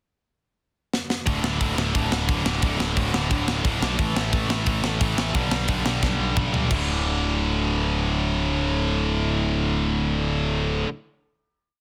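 Upbeat and energetic, this short punk rock piece charges along at 177 BPM in a straight 4/4. A drum fill at 0.9 seconds closes the pickup bar, and at 1.3 seconds two bright, distorted electric guitars come in with driving eighth-note power chords alongside a fuzzy, overdriven picked bass pumping punchy eighth notes low in the register. The tight acoustic kit sits up front with a medium-tuned snare, a firm kick, a rolled-off top end and a two-step groove, marked by crash, hi-hat and tom work, and a second fill leads into the closing chord. The verse moves from D5 to A5 to G/B before landing back on D5, where the guitars and bass ring out until about 10.9 seconds after the drums have stopped. The sound is dry and dense, with a heavily limited modern master that keeps the band close and loud.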